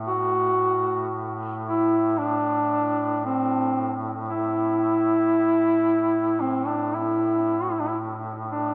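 Rubato and unhurried around 56 BPM in 4/4, this mournful, solemn Caucasian folk lament in A dorian, tuned slightly high to A4 = 441 Hz, is cut from a longer piece. A clear duduk holds a distant, roomy drone on A2 with vibrato and scooped notes, while a mellow duduk with a vintage tone sits up front from 0.1 seconds, singing the melody between C4 and F#4 with vibrato and a slapback echo. A wet cathedral reverb with a 4.4-second decay surrounds the two duduks throughout the 8.7 seconds.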